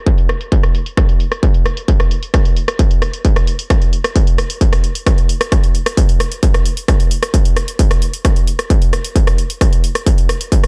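A distorted, layered electronic kick drum sits up front from the first moment, joined at once by a punchy analog drum machine whose dry, overdriven hi-hat and rim click play at a lower level under low-pass filtering. This industrial, driving techno fragment in straight 4/4 carries a filter sweep on the drums across its full length and sits in a digital ambience. Both parts run together until about 10.6 seconds, when the kick drops out and the drum machine carries on to the cut at about 10.7 seconds, a brief slice from a longer piece.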